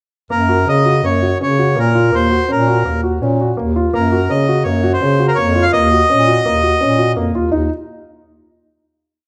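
A reedy accordion sits up front in this short, complete piece of contemporary chamber music, spinning a free-flowing melody that never settles into a recurring motif before it stops at 7.1 seconds. Beneath it, a dark grand piano repeats an arpeggiated ostinato with long sustain, giving the music a hypnotic pull. A bass clarinet with a mellow, soft attack, also placed up front, plays root-and-fifth lines on the main beats in a classical style. At 167 BPM in a straight 5/4 and in E-flat Dorian, the harmony alternates between Gb and Ebm7, and the uneven meter keeps the mood restless. The piano and bass clarinet carry on to 7.7 seconds, and a final note rings from 7.5 seconds to the close, all set in a recital hall with moderate reverb.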